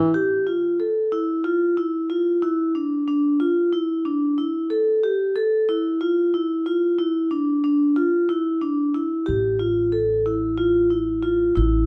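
Close, detailed microphones and light reverb frame this pensive yet urgent piece of contemporary chamber music, cut from a longer work and tuned slightly flat at A4 = 436 Hz, moving in 7/8 at 184 BPM counted in eighths with a straight feel. A vibraphone played with medium mallets and its motor off sits up front, its metallic, ringing arpeggios carrying a boxy small-room character as the harmony cycles through Fadd9, Dmadd9 and A5. At 9.3 s an upright bass joins beneath on a woody, thumpy pizzicato A1 with the warm tone of gut strings, grounding the closing Fadd9/A chord.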